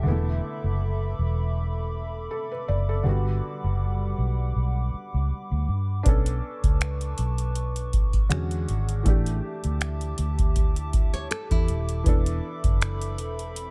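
A slow contemporary R&B groove at 80 BPM in 4/4, with a light swing on the sixteenths, sets a moody, longing tone in this excerpt from a longer piece. A felt-muted upright piano plays soft, intimate accompaniment over a hollow, flute-like pad with a slow attack and gentle chorus, while a vintage fingered electric bass sits up front with a dark, foam-muted, round and punchy tone. At 6.1 seconds a booming analog drum machine arrives, bringing a deep kick, metallic hi-hats and finger snaps with a tape-flavoured character. At 11.1 seconds a bright, fingerpicked nylon-string guitar adds brief classical-style arpeggios touched with digital delay, and a very quiet electronic downlifter and swell mark the opening and closing moments. The chords drift through E7sus4, Gmaj7, Bm9, E13 and A7sus4, and the close, dry mix keeps every part near and personal.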